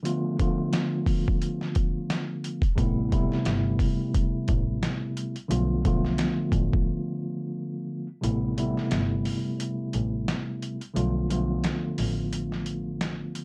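A dark, warm production with moderate studio reverb frames this tough boom-bap hip-hop piece, cut from a longer track and riding a swung groove. Up front, a mellow tine electric piano plays clean through its built-in speakers with a cassette-tape tint, moving between Bm7b5 and Am9 beside a gritty, pitched-down sampler-style drum kit with a thumpy kick, a medium-tuned snare and overdriven crunch. A rich, boxy double bass, bowed by one player with vibrato and an airy edge, enters at 2.8 seconds, and the kick drops out from 8.2 seconds.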